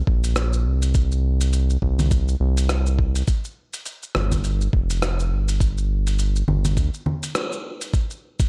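Nearly dry, this meditative organic downtempo excerpt at 103 BPM swings gently in 4/4, with a compressed, thumpy electronic kick up front and a dusty sampler-style kit of congas, hi-hat, rim click and shaker, both re-recorded in a large room, while a round, dark, evolving analog bass of sawtooth and sine tones with ring modulation pumps under sidechain until 6.9 s, before a band accent lands at 7.4 s.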